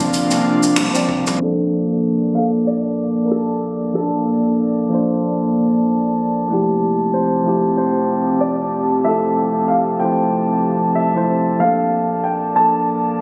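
A clean, up-front tine electric piano carries the accompaniment of this sunny chillout fragment, with tape echo. A grand piano melody, also echoed, sits above it alongside an airy, breathy pad that adds chorus and vintage 12-bit sampler grit, while a round, deep analog bass with tube saturation hums in the background. Brushed jazz drums with finger snaps, hi-hat, shaker and toms play only in the first 1.4 seconds, where a punchy electronic kick lands briefly at 1.1 seconds. From there a filter sweep runs through the rest over chords moving from Bbmaj7 to Fmaj9, all bathed in a wet concert-hall reverb and the muffled tone of a phone recording.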